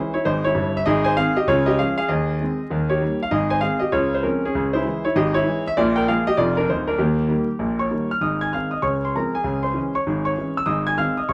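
Playful and swinging, this brief stride piano cut from a longer piece moves at a brisk 196 BPM in Ab major, with a lone concert grand, up front, offering deep bass and a smooth, vintage tone that spans the keyboard from D1 to Ab6, touched by moderate studio reverb and the crackle of vinyl as it cycles through Dbm, Ab, Bb7 and Eb harmonies over 11.3 seconds.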